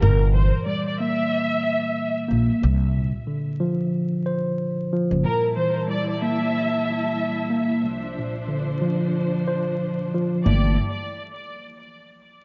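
Gritty and tough, this hip hop excerpt sets a lush, bowed violin section melody with vibrato and tape echo over a worn, slightly out-of-tune tine electric piano and a woody, dark pizzicato upright bass that drops out at 5.2 seconds just as a focused string section enters with sustained chords, all inside an echo-heavy mix with plate reverb and vinyl crackle.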